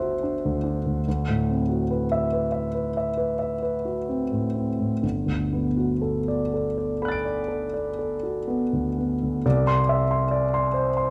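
Impressionist classical solo piano in G major, this short passage drifts with a dreamy, serene mood at a slow, rubato 40-48 BPM in 9/8, its dotted-quarter pulse stretching and relaxing freely. A single concert grand carries everything, spanning from a deep G1 in the bass up to D7, its tone clear, polished and intimate, with long sustain and mechanical action noise audible up close. Lush extended harmonies colour the opening, moving from D9 over a G bass to D13 at 1.1 seconds and settling onto Gmaj9 at 5.0 seconds. At 9.4 seconds the music turns toward a new section on Cadd9, a fresh shade that hangs as the passage is cut from the longer piece. The instrument sits up front and present within a moderate recital hall ambience that lets each chord bloom gently into the room.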